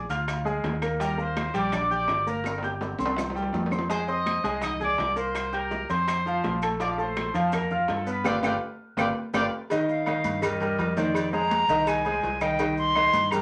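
A breathy, crisp silver flute takes over the lead at 9.9 seconds from a tight, vibrato-laden trumpet section in this driving, danceable salsa excerpt, carried by a polished, up-front concert grand piano, a round, punchy fingered electric bass, and background percussion of high-tuned bongos and cowbell, grainy maracas, ringing timbales and agogo bells, woody claves and thin-skinned congas, with drum fills and a band accent before the flute's solo.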